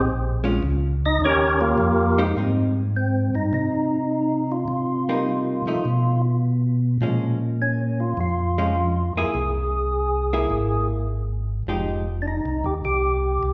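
A swinging 4/4 groove at 103 BPM, with eighth notes pushed to a 68% swing, carries this bluesy soul jazz organ trio cut from a longer piece in Ab major. A fat, lightly overdriven tonewheel organ takes the melody up front, its percussive third-harmonic attack and vibrato turning through a slow rotary speaker, and it solos over the opening 2.4 seconds. Beneath it, a second tonewheel organ plays the bass line with a round, mellow, clean tone, audible key click and the same slow rotary shimmer. A hollow-body electric jazz guitar adds picked, compressed accompaniment with a shadowy, clean sound until it stops at 12.0 seconds, while both organs carry on to the end. The harmony moves through chords such as Bbm7, Eb13, Abmaj7, a chordless stretch, Caug7 and Fm9, and the whole trio sits in the lush reverb of a church or recital hall.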